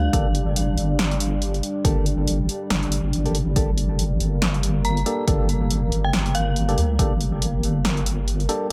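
A short, eerie synth bell chimes alongside a moody, detuned analog pad with vintage sampler grit and a deep, up-front wobble bass, opening this brooding, cavernous deep dubstep excerpt in G minor at 140 BPM with a swung half-time feel over a single Gmadd9 chord. Overdriven electronic drums enter at 0.1 seconds, pairing a deep kick with a punchy snare and hi-hat, while hollow, nasal organ stabs carrying cassette tape colour and dub echo punctuate the groove. The inharmonic FM bell returns from 4.8 to 6.8 seconds with tremolo and dub echo, and the kick drops out at 7.1 seconds as light reverb shades the whole passage.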